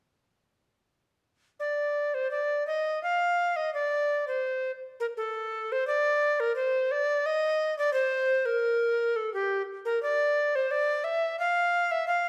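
Classical in style, this is a short cut from a baroque-style fantasia for unaccompanied recorder, flowing yet grave in mood, moving at 86 BPM in 3/4 with a free, rubato feel and tuned to A4 = 439 Hz. A bright tenor recorder plays alone from 1.6 to 12.3 seconds, ranging from G4 to F5. Its tone is woody and airy, with vibrato, a crisp attack and an audible chiff at the start of notes. The instrument sits up front, its highs lifted. A wet recital hall reverb with a 1.6-second decay surrounds the line, giving it a spacious, resonant setting.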